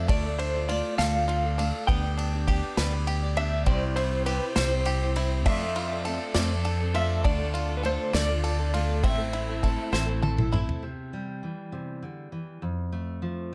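Wistful and yearning, this indie folk excerpt in a lilting 6/8 builds its arrangement layer by layer. A dark, slightly broken-up electric guitar through a small old amp carries the melody with tremolo and plate reverb, over a shimmering, octave-doubled twelve-string acoustic guitar and a bright, twangy bluegrass banjo whose arpeggios ring through tape echo. A fingered electric bass sits direct and up front, and an unplugged drum kit played with bundle sticks adds a punchy kick, a medium-tuned snare, toms and dark ride cymbal in an airy small-room sound. At 3.7 s a very quiet, distant chamber string section enters with bowed, vibrato-laden sustained chords, and a drum fill at 9.9 s closes the first passage, which moves through Dm, G/D, C, F6, Dm and Am. At 10.8 s a full-bodied, fingerpicked jumbo steel-string acoustic guitar plays alone, its finger squeaks audible, over a light reverb.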